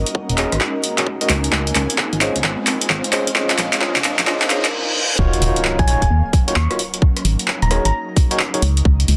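A dense, heavily limited modern mix with light reverb carries this skippy, late-night two-step UK garage excerpt at 131 BPM in Eb dorian, where an up-front layered electronic kick and a tape-warm analog drum machine of handclaps, hi-hat and rim click swing over a hollow, organ-like FM bass, while a gritty, barky overdriven tine electric piano stabs through chords such as Dbmaj9 and Bbm9. In the background, an airy, breathy pad with chorus and phaser and a cloudy granular pad pump against the kick, as a riser, filter sweep and drum fill build toward the drop at 5.2 seconds, which a reverse cymbal sweeps into and an impact marks. From 5.8 seconds a round, tine-like thumb-piano synth pluck adds a mellow melody with chorus and delay.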